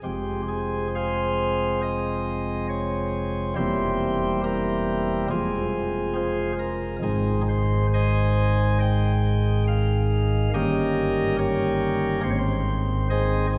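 Heard from further back in a church with a long, wet reverb, this 13.6-second cut from a longer classical piece has a solemn, dark mood. A solo chamber organ plays a chorale-style passage in flexible rubato, its flute stops light and bright with an audible chiff and sitting up front. The organ spans from deep bass notes to a sparkling upper register.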